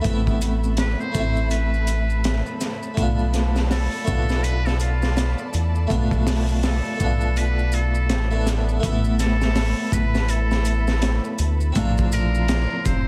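A smoky, melancholic trip hop excerpt in A minor at 82 BPM, cut from a longer piece, where a crunchy, saturated breakbeat kit with a high-tuned snare and a deep, round analog bass sit under a tremolo harpsichord and background strings, both gritty with 12-bit sampler texture, plus close, bright maracas, while a breathy, buzzy metal-muted trumpet carries the melody through dub echo from 0.8 seconds and a ringing Celtic harp adds tape-echoed arpeggios from 8.8 seconds.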